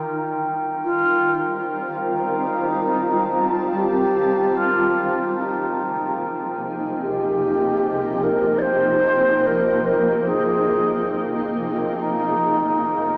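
An airy, warm wooden-headed alto flute carries the melody up front in this spacious, melancholic ambient fragment cut from a longer piece, its tongued, unsteady notes colored by vibrato and trailed by a diffuse ambient delay, with a distant quality to its sound. Alongside it, a bright shimmering pad holds sustained chords up front, its detuned, granular tone given an octave-up shimmer, chorus and its own reverb as it evolves. A glass harmonica adds a pure, glassy texture with a gentle beating, fading out across the passage, while a deep, ominous drone with a wave-folded, rumbling edge enters at 0.9 seconds, gradually fades in, and sits dark in the background. The harmony moves through Ab, F7, Bb7sus4 and Cm7 before returning to Ab and F7. The whole is bathed in a huge, wet reverb with a 7.5-second decay, yet heard through a small-speaker sound.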